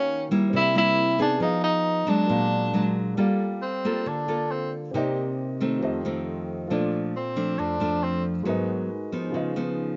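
Smooth and wistful, this bossa nova fragment moves at 136 BPM in a straight 4/4, tuned slightly high at A4 = 442 Hz. A fingerpicked nylon-string guitar with a classical touch sits up front, its finger squeaks audible. A warm grand piano plays underneath with an intimate, natural sound, long sustain and audible action noise. The clear tenor saxophone carries the melody in a narrow middle register, with light vibrato and scooped notes in a jazz style, sounding roomy and a touch distant. Opening on Ebm7 and C7 chords, the music settles into G minor at 3.2 s for the saxophone's solo over Gm9, Cm7, F7 and Bbmaj7, and the saxophone falls silent at 8.2 s while guitar and piano carry on. Light reverb and a mellow top end, rolled off above 7.6 kHz, give the whole a soft, late-night glow.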